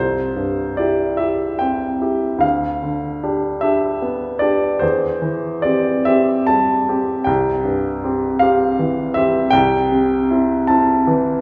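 Classical romantic nocturne for solo piano in a rubato 6/8, where a clear, polished baby grand sits up front in a wet recital hall and drifts through nostalgic, serene harmonies ranging from the low bass to the upper treble across this short fragment of a longer piece.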